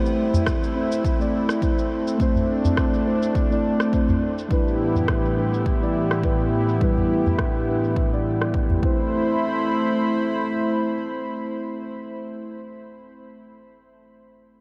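Organic downtempo in A minor at 104 BPM, with a gentle 16th-note swing and a hypnotic, earthy mood, cut from a longer piece. A smooth, detuned analog pad sits up front holding sustained chords from A minor to Em7/A and back, with chorus and sidechain pumping giving it a breathing motion, while muted, felt-like synth keys add soft, dark, fast-decaying accompaniment through a low-pass filter, chorus and a diffuse ambient delay. A filtered electronic shaker and rim click enter at 0.1 seconds, followed by a close, dry udu at 0.3 seconds and a punchy, layered electronic kick at 0.5 seconds, and the drums and keys both carry a filter sweep until 9.1 seconds. The percussion drops out around 9 seconds, leaving the pad and keys for a short closing passage. The whole mix is dreamy and soaked in a huge ambient reverb with a long 7.2-second tail.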